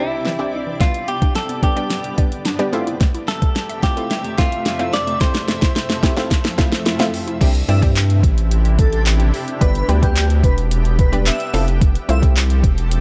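A dark, warm production with digital ambience frames this carefree, euphoric dance-pop cut in C major at 109 BPM, where a clean, direct-recorded electric guitar carries the opening melody through spring reverb and tape echo over a detuned sawtooth analog pluck, a shimmering, ethereal pad with octave-up shimmer, and a woody, very quiet mallet-like synth pluck playing arpeggios. The smooth R&B drum kit, with knocking kick, fat snare and metallic hats, comes in at 0.3 seconds and builds with a fill toward the drop at 7.4 seconds, where a round, deep analog bass enters up front. An airy, dreamy lead with phaser and vibrato then takes the melody, with the lead, pad, analog pluck and bass all pumping to the sidechain as the chords cycle through Cadd9, G and Fmaj7.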